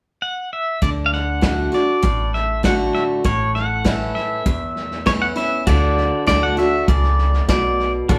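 A straight, unhurried 4/4 at 99 BPM carries this easygoing, heartfelt slice of honky-tonk and classic country in D major, tuned a little below standard pitch. A twangy pedal steel guitar opens the melody alone at 0.2 s, clean and compressed, with fingerpicked slides and volume swells, sitting up front in the mix. At 0.8 s the band comes in together, playing live in one room: a bright acoustic archtop picked on fresh strings, a woody, thumpy upright bass with gut strings, and a lo-fi vintage drum kit with a punchy kick, medium-tuned snare, hi-hat and dark, muffled cymbals. The harmony moves simply from D to A and back to D. At 5.7 s a second pedal steel adds sustained chords, brighter in tone and set lower in the mix, as the band moves into a new section. Moderate studio reverb lends the performance a natural, roomy sound.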